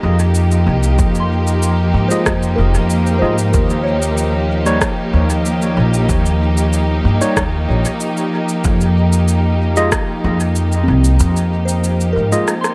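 A woody, growly pizzicato upright bass sits up front in this meditative, deep ambient dub excerpt at 94 BPM, beneath dark, bowed sul tasto chamber strings holding sustained chords through Fm7, Eb7 and F7(no3), while a layered electronic kick, an electronic cabasa and rim click with a tape-warm character and dub echo, a soft, pure FM synth bell playing arpeggios in the background through chorus, phaser and a low-pass filter sweep, and a barky, overdriven tine electric piano adding dub-echoed stabs from 2.1 s all sit in light reverb, ending on a drum fill at 12.5 s.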